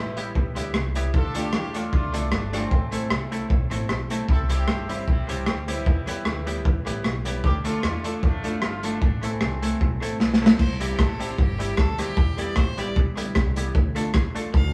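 A small, live-sounding room with moderate reverb frames this cheerful, joyful ska excerpt, where a crunchy, gritty breakbeat kit sits up front over woody, growly pizzicato upright bass, a very quiet twangy clean guitar riff, a bright, hollow-body semi-hollow guitar with dub echo, mellow background stabs from a dark upright piano, and a distant, roomy horn section carrying the melody until 10.0 seconds, before a drum fill hands off to a biting, earthy fiddle solo from 10.6 seconds.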